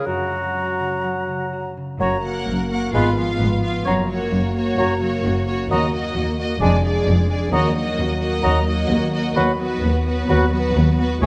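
Pushed and pulled in a rubato 4/4, this fast, dramatic romantic orchestral movement feels lively and spirited, and it is cut from a longer piece. For the first 2.0 seconds, woodwinds and harp carry it alone: an airy silver flute with lifted highs, a mellow oboe and a bright clarinet weave second lines, a close-miked bassoon accompanies, and a ringing fingerpicked harp plays arpeggios in the background. At 2.0 seconds, a mellow French horn section enters with sustained chords, and cello and double bass sections take the bass from a distance. At 2.3 seconds, a lush violin section takes the melody with a focused, smooth-topped vibrato tone. A second violin section adds an even second line beneath it, and a viola section accompanies with expressive portamento. The harmony moves through diminished passing chords into a minor-key turn, and the whole ensemble sits in a moderate concert hall reverb.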